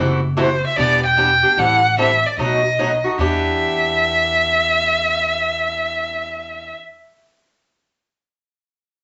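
A swung 4/4 pulse at 149 BPM drives this fiery short excerpt of jazz manouche in E minor, where bright, boxy picked acoustic guitar and woody, thumpy pizzicato upright bass with gut strings support an up-front bowed violin that enters at 0.4 seconds with a soft attack, vibrato and expressive portamento, all set in a club reverb.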